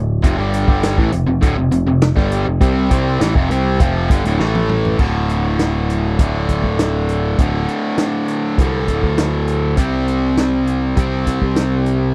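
A straight, mid-paced 4/4 groove drives this brooding, swaggering classic rock excerpt, cut from a longer piece, with a vintage acoustic drum kit of punchy kick, medium-tuned snare, hi-hat, crash and toms, its top end rolled off, entering at 0.2 seconds and playing a fill from 4.4 to 5.0 seconds into the second section. An overdriven, double-tracked electric guitar sits up front with a bright, picked riff, while a growly, direct picked bass holds the low end beneath it. Chords move through F5, A5, D5 and C5 in a dry, close 1970s-style studio sound with little reverb.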